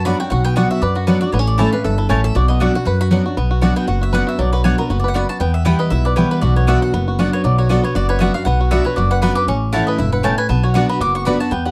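Swung eighth notes in 4/4 drive this lonesome bluegrass excerpt, where a bright, double-strung mandolin carries the melody and takes a solo from 3.4 seconds, a second, woody mandolin adds picked stabs, a full-bodied dreadnought guitar accompanies, a twangy fingerpicked banjo plays percussive arpeggios, and a thumpy, gut-strung upright bass sits up front, all captured in a dry, close 1970s-style studio sound.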